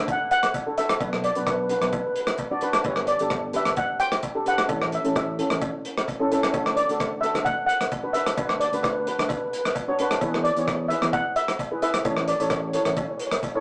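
Two mellow steel pans open this carefree, sunny calypso excerpt in D major at 130 BPM: a shimmering lead pan carries the melody while a darker, smooth double-seconds pan plays the accompaniment, both struck with soft rubber sticks. A bright, punchy fingered electric bass sits under them, joined from 0.1 seconds by a thuddy, cloth-damped drum kit of tight kick, hi-hat and rim click, gritty and up front with a rolled-off top, and a cowbell tucked in the background. The chords move from D through Bm, G and A, back to D and Bm/D, then to E7 before landing on A, and the whole take has the rough feel of a rehearsal-room recording heard through a small speaker in a short, wet booth.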